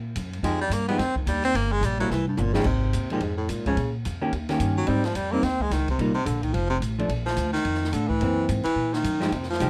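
Small-group swing and bop jazz in F minor at 216 BPM, smoky and swinging, in which a clear, forceful baritone saxophone solos with vibrato and scooped notes over woody pizzicato upright bass, a dark, clean hollow-body electric guitar comping through changes from Fm9 to Gb7#11, and an open kit with dark cymbals and a boomy kick that plays a fill from 2.1 to 2.7 seconds, all in a dark production with light reverb.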